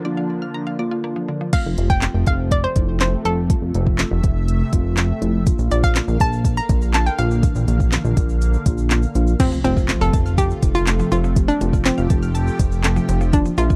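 Euphoric and upbeat, this dance-pop excerpt in F major moves at 122 BPM in a straight 4/4, opening on a brief break where a lush, detuned unison pad, a mellow tine electric piano and a woody, mallet-like synth pluck share a Bb chord before the groove arrives at 1.5 seconds. There the smooth R&B drum kit comes in up front with a soft kick, sharp snare, smooth hats, handclaps and crash, tape-tinged and electronic, and moments later a glossy, retro chorused synth bass settles low between F1 and Bb1 with sidechain pumping. A hollow, nasal square-wave pluck carries the bouncy melody with chorus and tape echo, riding over the pumping pad and the clean electric piano as the harmony shifts between F and Bb. A grainy, very quiet egg shaker joins at 5.5 seconds, and at 9.4 seconds the round mallet pluck returns with echoing arpeggios as a faint electronic impact marks the new section. The sound is dry and close, in the manner of a 1970s studio, with little reverb.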